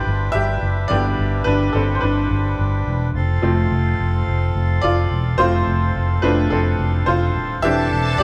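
A lightly swung sixteenth-note 4/4 groove carries this uplifting, anthemic pop excerpt, where a bright, slightly detuned upright piano takes the lead up front over reedy accordion chords and a dark, foam-muted electric bass that sounds round and punchy, moving through G and F before a lush, vibrato-rich violin section slides in at 7.6 seconds on Cadd9, all captured as a band playing live in a small, reverberant room.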